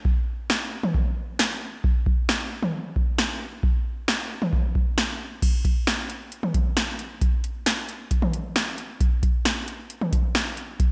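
An electro analog drum machine carries this short pop excerpt on its own, sitting up front with a deep kick, a punchy snare and metallic hi-hats. It runs from 0.1 s to 10.9 s at a straight 134 BPM in 4/4, giving the passage a driving yet melancholic feel. Crash cymbal and toms fill out the kit, and while its electronic sound is dry at the core, gated reverb gives the hits their characteristic burst. The overall production is bright in a 1980s digital style, set in light reverb. The pattern moves into a new section at 5.4 s, carrying the same pulse through to the end of this cut from a longer piece.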